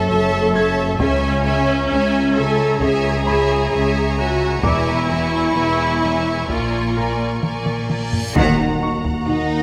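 At 66 BPM in a straight 4/4, this uneasy, mysterious suspense film cue sets a lush bowed string bed of violins, an up-front viola section, a close cello riff, cello bass lines and rich double basses under a brilliant background piano, with close, dry taiko drums joining at 1.0 s and a focused high violin texture, before a drum fill, a huge reverse cymbal and impact, hard-mallet timpani on the Ebm change at 8.4 s and a brief dark French horn chord at 9.3 s, all within a concert hall reverb.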